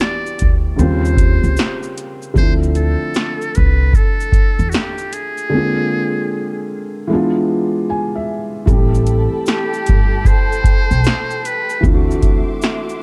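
Dark, lightly reverberant small-room sound frames this nostalgic, reflective lo-fi hip hop excerpt at 76 BPM with a swung 16th feel, where a dry, punchy analog drum machine with a deep kick and metallic hats sits up front beside a boxy, intimate felt-muted upright piano full of action noise, a thumpy gut-string pizzicato upright bass, and a buzzy, breathy metal-muted trumpet melody with scooped notes and tape echo, until a break at 5.5 s leads through a piano fill into a move to A dorian at 8.7 s, where a bowed sul tasto string section enters with smooth-topped sustained chords.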